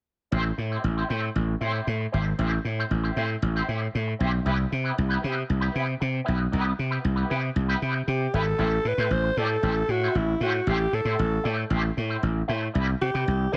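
At 0.3 s, a gritty slap bass and an electric guitar with an envelope filter start together, setting a sultry, driving disco groove in straight 4/4. The overdriven bass is punchy and growly, sitting up front, while the clean, picked guitar adds a twangy accompaniment colored by wah and tremolo, placed further back. The harmony moves between Am7 and Cmaj7 through the opening passage. At 8.1 s, a growling alto saxophone enters with a jazz-style solo, raspy and prominent, with a soft attack and a smooth top. Light reverb and studio ambience frame this short cut from a longer piece.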